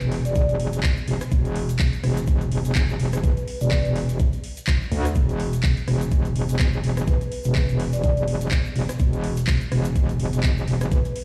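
An aggressive, saturated FM wobble bass with chorus and sidechain pumping sits up front in this swaggering, gritty bass house cut from a longer piece, joined at 0.4 seconds by a knocking, overdriven electronic kick. A garage kit of handclaps, rim clicks and metallic hats adds its own overdriven crunch under a swung 16th-note feel, while a grainy egg shaker stays in the background. Above them, a mellow soft-mallet vibraphone with fast motor vibrato and dub echo rings out a melody, dropping away at 3.9 seconds and returning at 7.1 seconds, all heard as if played on a big sound system in a bare stone room.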